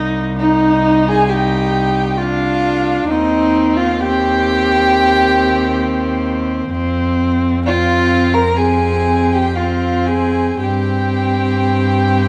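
Yearning and melancholic, this slow romantic movement for string quartet unfolds with a gently rubato feel and is cut from a longer piece. The viola and cello open together at 0.0 seconds, the viola supplying a rich, intimate accompaniment with light vibrato, a soft attack and an airy bow, while the cello sits up front with a pure, floating bass line, also softly attacked. At 0.4 seconds the two violins enter: the first carries a dark, woody melody with vibrato, heard close, and the second adds a supporting line with its own vibrato that sits up front yet sounds distant. The first violin, viola and cello are all bowed sul tasto. A moderate recital hall reverb surrounds the quartet, and a layer of vinyl crackle runs alongside the strings until the passage ends at 12.3 seconds.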